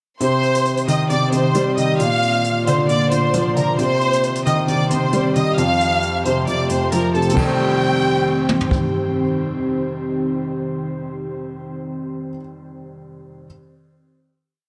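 A lush, up-front symphonic violin section carries a looping, vibrato-rich melody doubled in octaves and touched with tape echo through this melancholic, dark half-time trap piece at 134 BPM in C dorian, over a mellow baby grand piano arpeggiating in eighths, a glassy, ethereal FM pad with ensemble chorus sitting in the background, and a distant, roomy brush kit with gritty 12-bit sampler texture, punchy kick and fast hi-hat rolls, whose kick drops out from 5.6 to 7.4 seconds before the strings and drums fall away near 8.7 seconds to leave the piano and pad on a final C minor chord.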